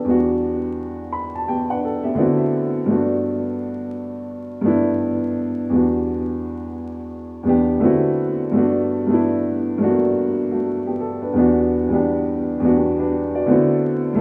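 Cosy and dreamy, this short hip hop excerpt features a lone upright piano, dark and woody, sitting up front and playing on its own for the full 14.2 seconds at a relaxed, swung lilt. Its mellow tone is softened by a low-pass filter and trailed by tape echo as it drifts through Em7, D13 and Gmaj9 across a range from E2 to B5, with a second section beginning at 8.5 seconds. The rough home-demo mix adds vinyl crackle and a small room's light reverb, lending the whole a vintage haze.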